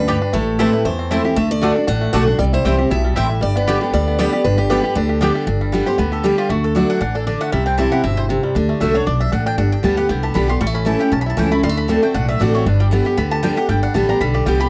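A dry, close 1970s-style studio sound frames this virtuosic, lively bluegrass excerpt in G major at 234 BPM with a swung feel, where a twangy, fingerpicked banjo carries the melody throughout, joined by a boxy parlour guitar on the melody until 5.3 s. A full-bodied dreadnought guitar holds the accompaniment up front over a thumpy, dark gut-string upright bass, and a woody, double-strung mandolin adds stabs before taking a solo from 5.5 s.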